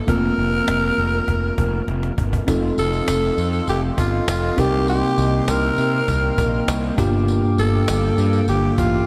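Drenched in a lush hall reverb with a big arena sound, this romantic, glossy slice of 1980s-style pop sets a raspy, gritty alto saxophone up front over a clean tine electric piano with slapback echo, a growly, fuzz-overdriven picked electric bass, and a woody cajon in the background. The saxophone sings its vibrato-laden melody through tape echo, and a cajon fill at 1.9 seconds leads out of the opening Fsus4 into chords moving through F7, Cm7 and Gm7. At 2.5 seconds a shimmering, dark, chorused pulse-width pad and a jingly vintage tambourine join.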